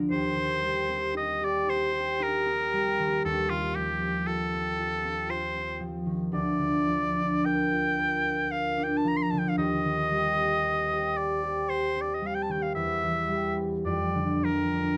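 Close, detailed microphones and light reverb give this romantic classical duo an intimate, present sound, taken from a longer piece. In an unhurried triple metre with free, rubato phrasing, a concert harp sets a ringing, thumb-plucked accompaniment up front from the opening moment, and the oboe enters at 0.1 seconds to carry the melody. The oboe's clear tone, soft attack and light vibrato shape a tender, lyrical line that sits up front alongside the harp's warm acoustic resonance.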